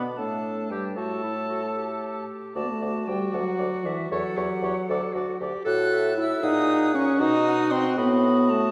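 Moving in 6/8 at 77 dotted-quarter beats per minute with a rubato feel, this quick classical-period movement for wind quintet in G major sounds urgent and dramatic across its 8.7 seconds, cut from a longer piece. An airy concert flute with vibrato and a crisp attack carries the melody high above, while a softly vibrating oboe with a roomy, distant quality shapes a second line beneath it. A clarinet with a smooth top fills in accompaniment in the middle register, alongside a dark French horn that sits up front in the blend and is the loudest voice. A punchy, mellow bassoon anchors the bass, and all five parts play throughout. The harmony moves from G through D and E minor toward F-sharp and B, closing on B7 over A, and the ensemble is heard from further back in a wet scoring-stage space.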